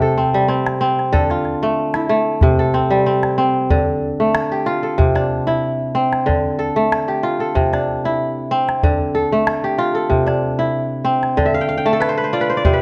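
Hypnotic and flowing, this short cut from a longer piece of West African traditional string and xylophone music moves at 94 BPM in a straight 4/4, centred on D minor. A fingerpicked kora carries the arpeggios from the very start, its ringing, crisp tone sitting up front as it ranges from C3 to A5. A small calabash joins at 0.5 seconds, heard close and dry beneath the strings. The harmony circles between D minor and C, first in a brief opening passage and then in a longer second section from 3.7 seconds, before the kora adds a fill from 11.5 seconds to the end. A moderate recital-hall reverb surrounds the performance, and the sound carries the worn, warbling pitch drift of old cassette tape.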